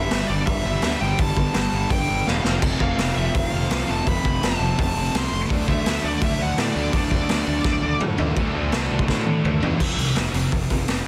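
Dry, dense and heavily limited, this raw, angry punk rock excerpt charges along at 167 BPM in a straight 4/4, with a gritty, saturated garage drum kit up front, a growly fuzz bass, three picked rhythm guitars (two overdriven, one tight and distorted) churning out riffs low in the mix, and a bright, high-gain lead guitar with distortion and delay carrying the melody until 8.0 seconds, as the chords move from G to F to D before landing on F5 at 9.8 seconds.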